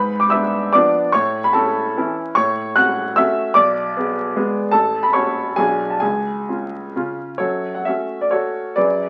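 A solo grand piano opens at once through the crackle of a very old 78 rpm record, sounding a diminished chord in F# minor. This is a brief passage cut from a longer romantic classical piece: a triple-time dance in 3/4 with dotted rhythms and a nostalgic, capricious mood. The tempo moves with rubato between 122 and 162 BPM. The piano is clear, intimate and up front, with a natural tone and audible action noise, and it ranges from A1 to F#6. Moderate studio reverb gives the instrument a modest sense of space. The harmony passes through A major, F# minor, B minor and C# before a new section settles onto F# minor at 7.4 s, and the piano plays through to 9.1 s.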